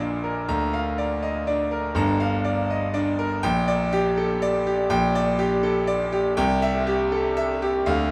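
Heroic and brilliant, this short fragment of a classical virtuoso piano study unfolds in a flexible, rubato triple metre. A lone concert grand, bright and up front with a deep bass, moves through Bb/D, Gm7, Gm/Bb and C across its 8.1 seconds. A huge, wet reverb with a long tail places it in a vast, echoing space.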